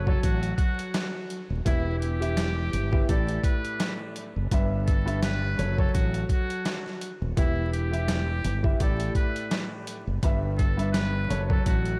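A buzzy, metal-muted trumpet plays a jazz-style solo line with light vibrato and scooped notes, floating in a diffuse delay over a woody upright piano with a cassette-tape coloring and an up-front, warm fretless electric bass. Gritty, compressed sampler-style drums enter at 0.1 seconds with a thumpy kick, medium-tuned snare and hi-hat, swinging at 84 BPM in E dorian through a cycle of F#m, Em, A7sus4 and Em/G. The moody, dark boom-bap groove sits in a dreamy mix soaked in plate reverb and vinyl crackle, cut from a longer piece.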